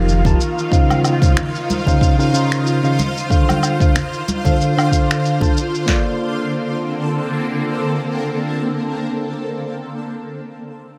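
A clean tine electric piano played through a combo amp with low-pass filtering and digital delay opens this smooth, relaxed sunset chillout excerpt alongside a bright, ethereal pad with chorus, phaser and octave-up shimmer and a very quiet, breathy wind-like noise texture, while an up-front deep house kit with a deep kick and punchy snare, layered electronic shaker, woodblock and finger snaps, and hard-hand congas in the background carry a lightly swung groove until about 6.0 s, after which the piano and pad continue alone over a Bbmaj9 chord to the close at 9.0 s.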